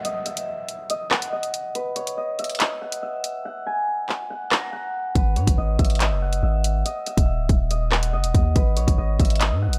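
A fingerpicked Celtic harp and an up-front electronic drum kit open this cold, menacing drill excerpt in G# minor at 141 BPM with a half-time feel. The ringing harp sits back in the mix behind a low-pass filter sweep and tape echo, while a brief electronic downlifter sounds through the first moments. The drum kit drives the break with a hard-clipped kick, handclaps, rim clicks and warm hi-hats, and the hats drop out from 3.5 to 5.2 seconds. At 5.2 seconds a deep, sine-toned 808-style bass arrives with a fast attack and long decay, sitting up front as the chords move from F#13sus4 to D#m and G#m11. Digital ambience surrounds the whole mix.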